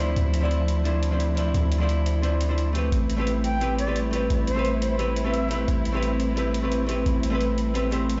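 Melancholic and dreamy, this liquid drum and bass fragment opens on a dark, hollow-body archtop guitar with digital delay, veiled con sordino strings holding sustained chords, and a deep, mellow 808-style bass sitting up front as the harmony shifts from Dm9 to Am9. A gritty, compressed electronic hi-hat enters at 0.2 seconds, and an airy, unsteady silver flute with tape echo and vibrato carries the melody from 3.4 to 5.6 seconds. The mix sounds as if played through a big sound system in a bare room, with large studio reverb and a dulled top end.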